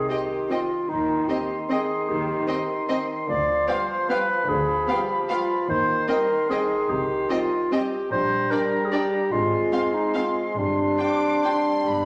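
A classical orchestral ballroom waltz in 3/4 with a sweeping, elegant mood and a rubato feel, this excerpt sets a clear, focused violin section on the melody in the background while a rich, lush second violin section, a mellow clarinet placed up front and a warm oboe with a smooth top carry second lines. Beneath them, a soft-attacked bassoon and an expressive, close viola section fill in the accompaniment, a dark French horn section holds sustained chords in the background, and a symphonic cello section pairs with a studio double bass section on the bass line, all the strings bowed with vibrato. The sound sits in a wet recital hall reverb as the harmony moves from C minor through G7/D and Fm/Ab to a Gsus4 at 10.6 seconds.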